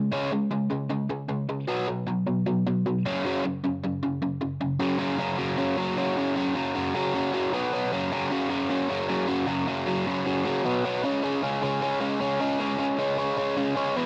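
Punk with a rebellious, upbeat drive, this short cut from a longer piece features a lone picked electric guitar, biting and overdriven, double-tracked and up front, moving through Db5, Cb5 and Gb5 chords and shifting into a new section at 4.8 seconds, all captured dry on a home cassette recording with a tape character.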